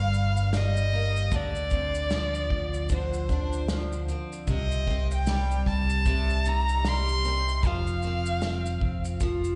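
Acoustic pop with a tender, wistful mood and a gentle swung lilt, this short excerpt is carried by an up-front, dark violin melody whose smooth, even bowing and vibrato float over a boxy, double-tracked parlour steel-string guitar, both touched with slapback echo. A round, amped fingered electric bass sits forward beneath them, while an unplugged kit played with bundle sticks adds punchy kick, medium-tuned snare and shaker from 0.1 seconds. The chords move from Gm through Dm7 and Cm to F5, and the whole sounds like a live gig heard through the venue's PA, with recital-hall reverb and a dulled top end.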